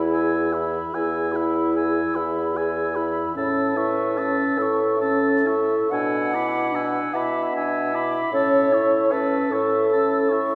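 Classical chamber music for wind quintet, this serene, slow romantic movement in E major drifts at 50 BPM in a rubato 12/8, cut from a longer piece and moving through E, A, E7/B and back to A. A pure, hollow silver flute carries the high melody with vibrato and tongued notes, while the oboe adds a warm second line with light vibrato. A mellow clarinet and a glowing French horn fill the accompaniment, and the bassoon anchors the low bass with light vibrato, all set in a lush concert hall reverb heard from further back in the room.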